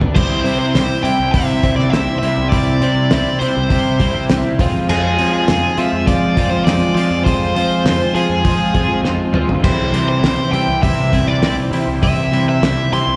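Upbeat yet wistful, this indie rock excerpt moves at 101 BPM in C major, with two bright, compressed twelve-string electric guitars picking clean riffs in the background, one carrying analog chorus and the other a twangy edge with subtle chorus, both with slapback echo, over a punchy fuzz-overdriven picked bass and a cloth-damped, thuddy drum kit whose muffled, gritty sound has dark cymbals, a fat snare and a tight kick. An overdriven electric guitar takes the up-front melody from 0.2 s with slapback echo, while a very quiet, airy, breathy pad of detuned, chorused tones enters at 1.1 s to sustain chords. The harmony shifts from C to F minor at 4.6 s and back to C at 9.6 s, just after a drum fill, all heard as a live gig through the venue's PA with recital-hall reverb.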